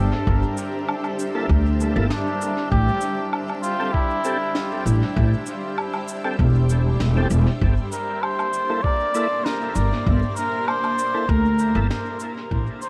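A veiled cup-muted trumpet carries the melody through dub echo over a woody, up-front pizzicato upright bass in this hazy, spacious ambient dub cut in G dorian at 98 BPM, with a blurred, evolving granular cloud pad holding Gm69 and Am7 chords, a muffled, pitched-down electronic kick, brushed snare with cabasa and woodblock in a small room, a gritty overdriven tonewheel organ stabbing in the background through slow rotary speaker and echo, and vinyl crackle beneath it all until the fade-out from 10.9 seconds.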